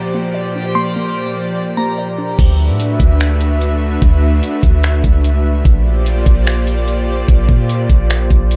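A digital ambience surrounds this floating, dreamy excerpt of atmospheric cloud-rap, which opens with a glassy, warbling FM synth bell melody, a hollow square-wave pluck playing arpeggios in the background, and a reversed, granular texture with its own reverb, all over an airy, breathy pad of sustained chords that runs throughout. At 2.4 s the half-time groove arrives: a deep, round 808-style bass and a smooth R&B drum kit with a knocking kick, metallic hi-hats, finger snaps and crash cymbal sit up front, the kit re-recorded in a small room. The pad carries chorus and sidechain pumping, while the bell and pluck are shaped by chorus, low-pass filtering and digital delay, and the bell adds tremolo.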